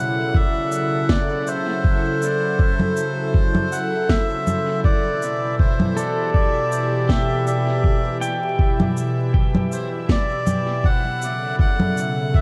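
Ambient dub at a relaxed 80 BPM in E minor, this meditative, spacious piece sets a reedy, breathy melodica melody with tape echo over sustained chords from a warbling, detuned, nostalgic pad and a bright, resonant bubbling texture with random filter steps sitting in the background. A muffled, thumpy kick sits up front, joined by an electronic shaker, congas and a woody snare carrying dub echo, all in small room ambience. At 6.0 s a clean pedal steel guitar with slide adds arpeggios through tape echo, and the whole piece sits in a dark, warm production with vinyl crackle.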